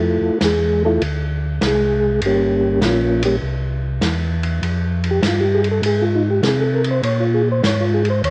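A percussive tonewheel organ carries the melody in this smoky, soulful soul jazz organ trio, its soft, flute-like tone with second-harmonic percussion turning through a slow rotary speaker and chorus vibrato, the sound coloured by cassette tape. Underneath, a second tonewheel organ holds down the bass with a round, dark, clean voice, also shaded by chorus vibrato and slow rotary, both organs sitting up front. A vintage acoustic drum kit joins at 0.4 seconds on hi-hat, ride and a medium-tuned snare, its dark cymbals and rolled-off top softened further by tape. The groove swings at 100 BPM in 4/4 in F minor, drifting through chords such as Fmaj7, Gm7b5 and Fmadd9 before landing on Absus2 at 7.0 seconds. Light reverb and a small room ambience give this short cut from a longer piece the intimate feel of a home cassette recording.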